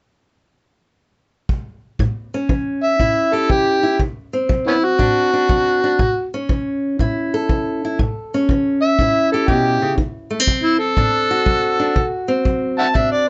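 Acoustic country blues with a swaggering, rollicking swing at 120 BPM in A mixolydian, this excerpt starts with a distant, punchy brushed kick drum at 1.5 seconds, joined at 2.0 seconds by a fingerpicked steel-string guitar moving between A7 and D7, its finger squeaks audible. At 2.8 seconds an amplified, gritty overdriven harmonica takes the lead up front, playing in a jazz style with vibrato, tongue slaps, scooped notes and a soft attack. A moderate booth ambience surrounds all three parts, and the overall sound has a muted upper end.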